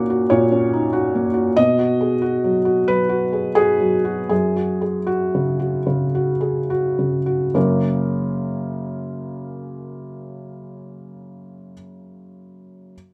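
A felt-muted upright piano carries this short neoclassical minimalist passage alone, its soft, mellow tone sitting up front in an intimate, close sound. The mood is hopeful and peaceful, with a rubato feel in 4/4 that lets the phrases breathe freely. Opening on an F#/A# chord and moving to B at 1.6 seconds, the playing gradually slows from 0.3 to 7.5 seconds before coming to rest on F# at 7.5 seconds, where a new section begins. The piano moves across a range from low F#2 up to F#5, with a light reverb giving the muffled notes a gentle sense of space. Cut from a longer piece, it offers a brief, quietly tender moment.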